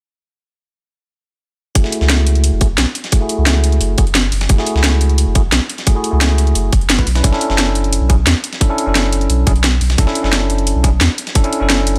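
Set in a digital ambience, this soulful, dreamy liquid drum and bass excerpt moves at 175 BPM in F# minor: a bell-like, clean tine electric piano enters at 1.7 s through a low-pass filter, tape echo and a filter sweep, voicing F#m9 and then Bm11, before a deep, thick saturated sub bass with a fast attack sits up front beside a tight, layered electronic kick drum with studio reverb, a drum and bass kit of hi-hat and cracking snare also in studio reverb, and a gritty, compressed sampler-style kit with a fat snare, high-pass-filtered hats and snare and studio reverb tucked in the background, with the kick dropping out at 11.4 s.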